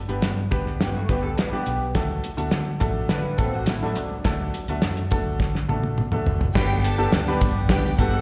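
Uptempo 1960s-style soul at 104 BPM in G major, warm and danceable, driven by a thuddy cloth-damped drum kit and a round, foam-muted electric bass beneath woody upright piano with slapback echo, while a twangy, slightly broken-up electric guitar riff with analog chorus enters at 0.8 seconds, very quiet high-tuned congas join at 2.2 seconds, and as a drum fill draws to a close a mellow horn section and a floating, bowed violin section arrive together at 6.5 seconds, the whole heard through a venue PA with recital hall reverb in a short cut from a longer piece.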